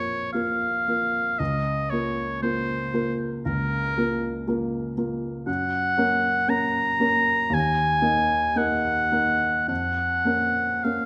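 Set in the moderate reverb of a recital hall, this melancholic, elegiac fragment of a romantic classical duo in Bb minor moves with rubato at 52-60 BPM in 4/4, as a clear, up-front oboe sings the solo melody over an intimate baby grand piano whose natural tone carries audible action noise while it accompanies through chords from Bbm to Gb and Ebm before settling on Bbm/F near 9.7 seconds.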